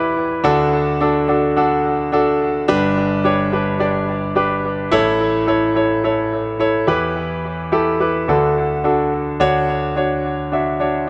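A clear, polished concert grand piano sits up front in an echo-heavy mix, with a moderate spring reverb and a soft top end that stops short of the highest frequencies. This brief pop excerpt in D major moves at 107 BPM in a straight 4/4, carrying an anthemic, hopeful mood. The piano plays alone from start to finish, spanning a deep bass register up into its upper middle range, with short sustain and a dub echo that trails behind its notes. The harmony moves through D, G, A and Em before returning to D, then opens onto a Dmaj7 at 9.4 seconds as a new section begins. The piece is cut from a longer work and ends at 11.1 seconds.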